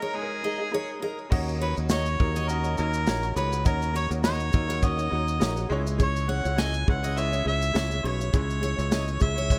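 Reflective and wistful, this lightly swung acoustic pop excerpt opens with a mellow, vintage-toned harmonica melody out front, full of vibrato and scooped notes and touched with delay, over a bright, slightly detuned upright piano with audible action noise, a light thumb-plucked ukulele, and fresh-stringed jumbo steel-string guitar arpeggios with delay set in the background, before a growly, direct fingered electric bass and an airy, polished country drum kit of punchy kick, snare, shaker and crash cymbal arrive at 1.3 seconds, the whole sitting in a studio reverb.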